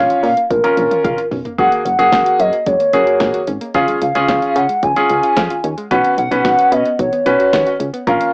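This upbeat, nostalgic synth-pop excerpt opens with a hollow, woody clarinet-like synth lead carrying the melody up front, its soft square-wave tone colored by chorus and vibrato, over a clear grand piano whose intimate sound includes audible action noise. Beneath them, a solid FM bass gives round, mellow low notes with a quick attack, while a soft pluck built from triangle, sine and sawtooth waves plays arpeggios in the background, dressed in chorus and tape echo. A punchy analog drum machine enters at 0.1 seconds with kick, snare, hi-hat and toms, adding a drum fill from 0.5 to 1.6 seconds. At a straight 111 BPM in 4/4, the harmony moves through A#m, F#add9, C# and Bsus2. The lead, piano, pluck and drums share a cassette-tape coloring, and the whole mix sits in a wet studio reverb with the small-speaker feel of a home cassette recording.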